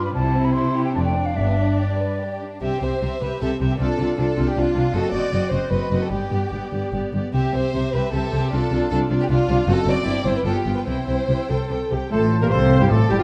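Graceful and spirited, this quick classical-period movement in triple time for symphony orchestra moves with a flexible, rubato feel, its rich chamber violins carrying the melody above a second violin line, smooth-topped violas, clear cellos and double basses, all bowed with vibrato and set in moderate stage reverb with a dark, warm production. An airy, crisp silver flute adds a second line at the start and returns at 12.1 seconds, where a distant oboe, a background clarinet and mellow horn chords join for the brief return of the opening material, cut from a longer piece.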